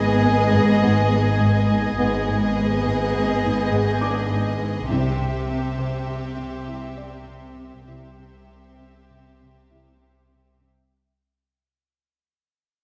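Eerie and mysterious, this suspense film score moves at 102 BPM in 5/4, shifting from G#m to C at 4.9 s as two soft-attack violin sections carry a sul tasto melody and second line over a woody viola accompaniment. Below them, a lush cello section plays a riff while a second, rich cello section and a dark, intimate double bass section hold the bass, with tight French horns sustaining chords in the background. High chamber violins add a warm texture until 4.6 s, a mellow felt-muted upright piano enters at 4.0 s, and the whole fades out under a wet scoring stage reverb and vinyl crackle.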